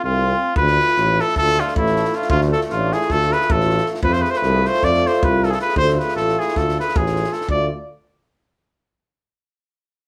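Driven by a straight 9/8 pulse, this short cut from a longer Balkan brass band piece feels bittersweet and fiery, its harmony moving between F and D minor. A classical-style trumpet with a warm tone carries the melody up front, while a breathy, mellow wooden-headed alto flute adds a very quiet, distant second line with vibrato, tongued and unsteady. Behind them, a roomy euphonium with light vibrato and a punchy trombone hold accompaniment notes in the background. A soft-attacked tuba anchors the bass. A compact, dry acoustic cocktail drum kit with a high-tuned snare and tight kick enters at 0.6 s. The band sounds as if it is playing live in one room, wrapped in a wet studio reverb.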